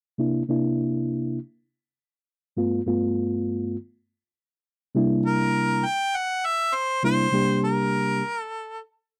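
Laid-back and swaggering, this short blues fragment in free time is cut from a longer piece and sits in C mixolydian, tuned to A4 = 443 Hz. A reed electric piano begins the accompaniment at 0.2 seconds, its reedy, clean tone heard through its built-in speakers and placed up front as the harmony moves from C7 to G7. At 5.3 seconds a clear harmonica enters with the solo melody, punchy and pop-styled, with vibrato and scooped notes, also up front, over the C9 chord that arrived at 5.0 seconds. The piano stops at 8.2 seconds, and the harmonica carries on briefly. The sound is a dry, close studio recording in a 1970s style, with very little room ambience.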